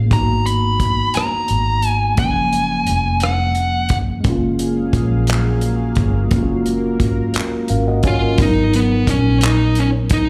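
Heard through a venue's PA with the reverb of a small club around it, this fragment of slow six-eight R&B feels tender and warm. A mellow, clean tine electric piano plays through its built-in speakers, moving between G#m9 and F#maj9 chords, while a dark, round, foam-muted fingered bass sits up front with an amped vintage tone. An acoustic soul drum kit with a tight kick and a rolled-off top carries handclaps, hi-hat and rim clicks. A dark, picked fuzz lead guitar, distorted and up front, sings the melody, then drops out after its first phrase. A shimmering, retro chorused pulse-width pad fades in quietly at 4.5 seconds with a slow attack and long release. The electric piano adds a fill at 7.4 seconds, and the guitar returns at 8.1 seconds.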